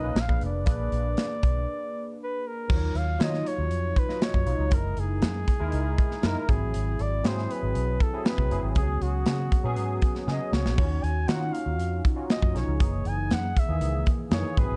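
Urban and nocturnal, this cut from a longer piece of polished 1980s jazz-funk pop moves at 119 BPM in a straight 4/4 and sits in Eb minor. A flugelhorn carries the melody in a smooth, jazz-style solo, with light vibrato and scooped notes, over a barky tine electric piano that is lightly overdriven, run through a combo amp and colored with analog chorus. Underneath, a vintage foam-muted fingered electric bass sounds round, punchy and up front. A modern studio drum kit with a tight kick, a medium-tuned snare and bright cymbals, including crash and splash, comes in at 0.2 seconds, roughened by a 12-bit sampler grit. A short break arrives at 1.7 seconds, and the kit plays a fill at 10.3 seconds. The harmony moves through rich chords such as Ebm9, Gb13, Ab7alt and Db7sus4, and the production is dark and warm, with light reverb and a softened top end.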